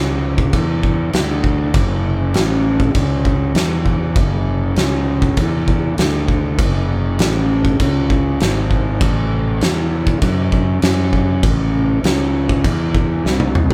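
Stoner and doom metal with a sludgy, brooding mood, moving at 99 BPM in a straight 4/4 in this short section cut from a longer piece. A fuzz-laden, fingered electric bass opens alone, its overdriven, growly tone sitting up front and ranging from F#1 to F#2 with a bright, amped edge. At 0.4 seconds an oversized, low-tuned acoustic drum kit joins, with a boomy kick, fat snare, toms, and dark crash cymbals that sound saturated and gritty in a big, pumping room. The band plays live in one room with little reverb, keeping both parts close and raw. A drum fill at 13.2 seconds closes the passage before it cuts off at 13.7 seconds.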